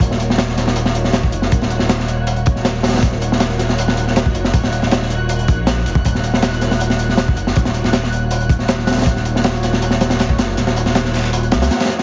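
Raw and atmospheric, this cut from a longer drum and bass and jungle track runs at 159 BPM in Eb minor over a single Ebm7 chord. A punchy, gritty breakbeat kit with a high-tuned snare sits up front beside a deep, tube-saturated sub bass, while a very quiet, tape-toned sampler-style break plays beneath. A silky, chorused string machine holds mellow chords in the background, and a twinkling granular texture with octave-up shimmer enters at 0.8 seconds. The mix carries a heavily compressed radio sound, vinyl crackle and a light studio reverb.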